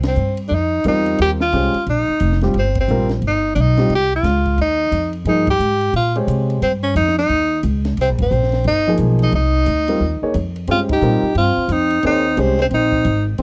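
Hypnotic and intense, this modal jazz excerpt swings over a single Cm7 harmony, with the full band landing accents together every few seconds. A woody, thumpy upright bass sits up front alongside a clear tenor saxophone, whose soloing line carries light vibrato, soft attacks and scooped notes. In the background, a compact cocktail drum kit sounds dark and smooth, with a punchy kick, a high-tuned snare and dark cymbals. A grand piano with an intimate tone and audible action noise adds accompaniment from 0.9 seconds, pausing at 6.6 seconds before returning at 8.9. Near the close, a breathy, vintage-toned trombone enters at 10.7 seconds as a second line beneath the saxophone. The dry, close sound recalls a 1970s studio session.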